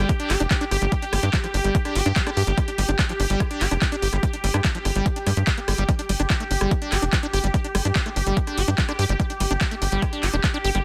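Psychedelic trance at 145 BPM, driving and intense, this short cut from a longer piece rides a punchy, up-front electronic kick and a drum kit of bright hats, handclaps and rim clicks, overdriven and re-recorded in a small room. A tight, sawtooth-and-square sequencer bass plucks low beneath a squelchy, resonant acid riff coloured by chorus, cassette tape and delay and pumping against the kick. Above them, a bubbling stepped-filter texture holds detuned sawtooth chords with a slow attack, built-in reverb and 12-bit sampler grit, all set in digital ambience under a dense, heavily limited modern master.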